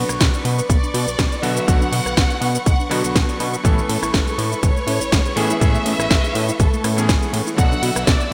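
The bright, 1980s-style digital production and light reverb give this short nu-disco excerpt a cosmic, sleek mood. A house drum kit of cracking snare, metallic hi-hats, ride cymbal, rim click and shaker enters at 0.1 s, with gated reverb and a tape-tinged, small-room character, and an up-front, punchy electronic kick drum joins it at 0.2 s. Underneath, a fat, detuned sawtooth analog bass with a filter sweep anchors the low end, while a clear, vintage electric grand piano with a clangy low register plays accompaniment through digital delay. A lush symphonic violin section carries the melody with vibrato and a soft attack, also sent through digital delay, over a dark, woody studio string section whose sustained chords pump with sidechain compression. Tucked in the background, a gentle, round pluck adds chorused, delayed arpeggios that pump as well, while the harmony moves from Bm to Amaj7 at 3.6 s and back to Bm.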